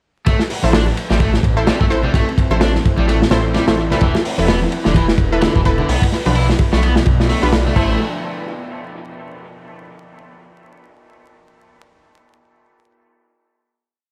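Breakbeat in A minor at 128 BPM with a swung 16th feel, this raw and energetic piece drops in at 0.3 seconds with a crunchy, saturated looped breakbeat kit up front, its dark cymbals, tight kick and edits treated with dub echo, while a thick, swirling phased saw bass plays a dotted rhythm beneath an overdriven hollow-body guitar riff cycling a 16-step sequence through sampler grit and dub echo. Ringing bongos and congas loop in the background, a bold, punchy orchestra-hit-style stab adds bright syncopated chords with reverb and echo, and from 1.5 seconds a deep, moody pad with a sub octave and chorus pumps against the beat. The chords move from Am through Esus4 and Bdim before settling on a final Am at 7.8 seconds, all in an echo-heavy mix dusted with vinyl crackle.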